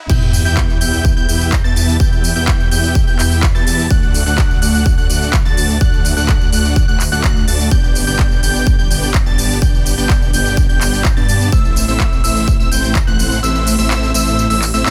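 Emotional, euphoric festival progressive house at 126 BPM in E minor, this excerpt from a longer piece drops straight in with a very quiet riser and sub drop for the first 2.0 seconds, a punchy up-front electronic kick, a crisp tape-warm big-room kit of crash, handclaps, hi-hat and tambourine, a thick chorused detuned saw bass, a huge airy compressed supersaw riff and a catchy mellow plucky unison lead playing arpeggios through tape colour and digital delay, the bass, riff and lead all pumping over Em, D, G and Am in a dry mix until the kick drops out at 13.4 seconds.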